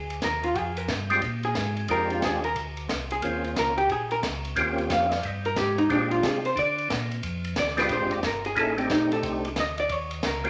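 Soul jazz organ trio music, swinging and bluesy, at a brisk 180 BPM in 4/4 with a swing feel on the eighth notes, centred in B-flat mixolydian. This excerpt, cut from a longer piece, opens with a hollow-body archtop guitar solo that runs the full 10.5 seconds, its clean, picked electric tone dark and up front. A tonewheel organ holds down the bass with a piping, scooped sound, lightly overdriven, with key click and a slow rotary speaker. A compact cocktail drum kit plays hi-hat, kick, ride and snare with a smooth, rolled-off top, a high-tuned snare and a punchy kick. From 1.1 seconds a second, percussive tonewheel organ carries the melody, mellow and round with third-harmonic percussion, chorus vibrato and slow rotary, sitting up front in the mix. The harmony moves through Bb13, Eb13, back to Bb13 and then Cm13/A before landing on an Eb7 that omits the third, all in a wet large-studio reverb.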